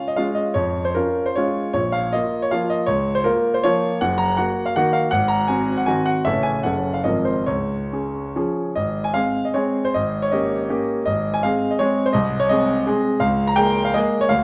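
A clear, up-front concert grand piano plays alone in this graceful, rustic romantic classical dance in 3/4, its dotted rhythms moving with free rubato at roughly 130-178 BPM. The open tone carries a deep bass, set in a wet recital hall and given a dark production. Cut from a longer piece, the passage begins in Db major and shifts to Ab major at 8.8 seconds, running until 14.4 seconds.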